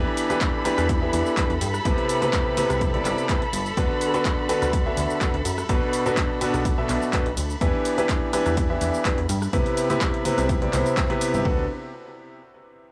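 A bright grand piano leads this uplifting, feel-good piano house excerpt, its brilliant, up-front riff carrying audible action noise and a tape echo while pumping with the sidechain. Cut from a longer piece, it moves at 125 BPM in 4/4 with a light 16th-note swing in D mixolydian, cycling through Em7, Cmaj7, D6 and Bm7 in the drop that runs from the start to 11.5 seconds. Underneath, a plucky analog bass built from sawtooth and pulse waves gives a funky, fast-attack, decaying filter pluck, and a dark studio violin section holds lush, bowed chords with vibrato, portamento and a soft attack, both also pumping with the sidechain. A punchy, tape-warm analog drum machine adds handclaps, hi-hat, ride cymbal, rim click and shaker from 0.2 seconds, joined by an electronic kick drum re-recorded in a small room from 0.4 seconds. The band hits an accent at 11.0 seconds before a brief new section, all set in a digital ambience with a dry, gritty hardware sound.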